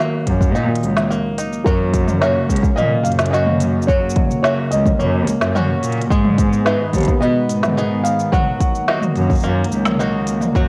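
Folktronica in F# major at 108 BPM, this hopeful, delicate piece has a nostalgic cassette-recorded sheen, with a soft, felt-muted upright piano carrying the melody through tape echo until 8.8 s over a warbling, detuned tape-like pad that holds dark, chorused chords. A twangy, fingerpicked banjo spins percussive arpeggios while a rich, bowed cello with smooth vibrato enters at 0.3 s to hold the bass up front. An overdriven deep electronic kick drives the groove alongside a woody snare, smooth hats, cabasa and toms, with a brief break at 1.1 s before the chords move from F# through G#m to D#m.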